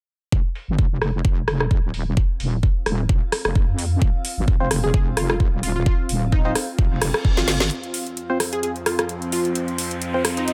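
A bouncy, aggressive bass house groove at 130 BPM in 4/4 with a 55% swing on the 16ths opens at 0.3 seconds, as a knocking electronic kick and a garage kit with a woody snare, rim click and metallic, low-pass-filtered hats push hard under a heavy, saturated wobble bass that pumps to the sidechain around an F chord. A cloudy granular pad fades in from the background, then a hollow, phased organ stab and a bright, punchy unison lead with vibrato and dub echo enter near 4.6 seconds. A reverse cymbal and drum fill usher in a build-up at 7.7 seconds, where the bass drops out and a reedy, gut-string studio string section, organ and strings all sweep through filters over a rising riser in this dry, up-front cut from a longer piece.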